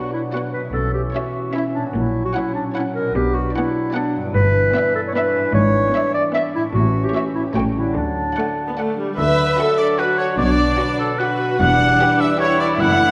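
This playful, whimsical film cue in a lilting triple metre opens with a chamber string and wind texture: a rich violin section carries the melody with vibrato and a focused, smooth top, while a second violin section plays a supporting line. Alongside them, a soft-attacked clarinet plays a second line from a roomy distance, the viola section provides close, expressive accompaniment with portamento, dark French horns hold sustained chords, and a ringing, fingerpicked concert harp spreads arpeggios across its range. At 0.7 seconds the low strings enter: a clear cello section and an intense double bass section, both bowed and set further back. The clarinet drops out at 9.0 seconds, and an up-front oboe with light vibrato takes over the second line at 9.2 seconds, bringing a fresh colour to the closing phrase. The whole ensemble sits in a wet scoring-stage reverb that gives this quirky, magical fragment of a longer piece a sense of lush space.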